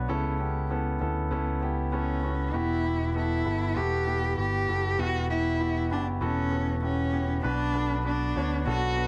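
A rich, nasal cello, bowed by one player with vibrato, carries the melody from 1.9 s in this driving, bittersweet piano-driven pop piece at 98 BPM in E dorian. A concert grand piano with audible action noise, deep bass and long sustain plays the accompaniment, while a picked electric bass runs through an envelope filter with an amped, up-front tone. Light reverb and small room ambience frame this cut from a longer piece as the harmony moves from Aadd9/C# to Emadd9 and then Bm.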